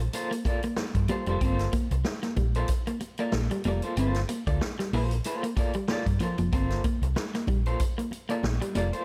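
A driving, hypnotic funk groove at 94 BPM in G minor, swung on the 16ths and cut from a longer piece, opens on a single Gm11 chord with a tremolo-shimmering rhythm guitar, a dark, round hollow-body fingered bass up front and a swinging big-band kit with a boomy kick and medium-tuned snare in a big room, before a second slightly broken-up, compressed, picked guitar enters at 0.3 seconds with a low riff colored by warbly pitch drift and ringing, high-tuned congas played with hard hands join from the background at 0.4 seconds.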